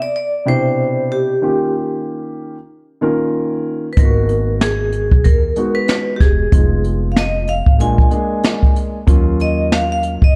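Nocturnal and smoky, this jazz-hop cut from a longer piece moves at 94 BPM in 4/4 with a swung sixteenth-note feel, set in Eb minor. A bright, ringing vibraphone played with medium hard mallets carries the melody from the opening, its fast motor vibrato shimmering up front. A dark concert grand piano enters at 0.5 seconds with mellow, smooth accompaniment, its short sustain and deep bass giving a vintage cast. At 4.0 seconds the pizzicato upright bass arrives with a woody, thumpy gut-string tone, alongside a brushed jazz kit of hi-hat, boomy kick and medium-tuned snare that sits forward in the mix with vintage 12-bit sampler grit. The harmony drifts from Cmaj7 and Eb7 through Abm7, Fm7b5 and Bb7 before settling on Ebm7, all wrapped in a dark production with light reverb and small room ambience.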